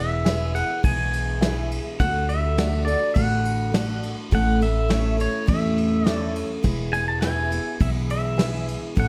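A clean, fingerpicked pedal steel guitar carries the melody with slide and volume swells up front in this sunny, heartfelt honky-tonk and classic country excerpt at 103 BPM in 4/4, over a bright picked dreadnought acoustic guitar, a woody pizzicato upright bass, a jangly, detuned vintage upright piano entering at 0.2 s, and a dark, smooth brushed kit of kick, snare and ride, all moving through E, D and A in light reverb.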